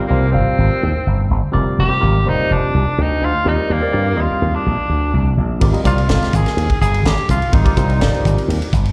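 A growly, punchy slap bass with an envelope filter drives this slick, intense electric jazz fusion passage at 125 BPM, alongside a vintage-toned tenor saxophone melody with vibrato and tape echo, a barky, lightly overdriven tine electric piano comping through a combo amp with phaser and slapback echo, and a tight, crisp drum kit with a high-tuned snare arriving at 5.6 seconds, all heard as a live gig through the venue's PA with recital hall reverb over chords moving from Abmaj9 through Fm69 and Ebmaj9 and back.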